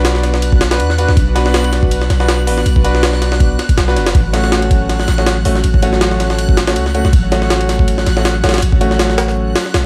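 Drums, 808-style bass, breathy pad, piano stabs and a reversed swelling texture all start together in this atmospheric, raw drum and bass excerpt at 161 BPM in B minor, where a gritty, pitched-up jungle kit with a thumpy kick and high-tuned snare sits up front beside a deep, mellow sine bass, while a clear, boxy grand piano with audible action noise throws dub-echoed stabs over an airy, chorused pad and a dreamy, granular backwards texture, all moving from Bm to F#m/A at 4.2 seconds under light reverb and vinyl crackle.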